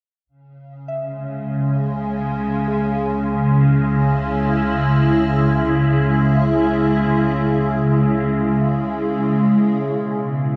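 Floating in free time, this peaceful, weightless ambient piece rests on a deep, round analog bass that fades in from 0.3 s in the background; a bright, detuned wavetable pad joins up front at 1.1 s with morphing sustained chords colored by ensemble chorus, phaser and ring modulation, while a very quiet, pure FM bell traces mellow arpeggios until 9.8 s, inside a dark production and a wet concert-hall reverb.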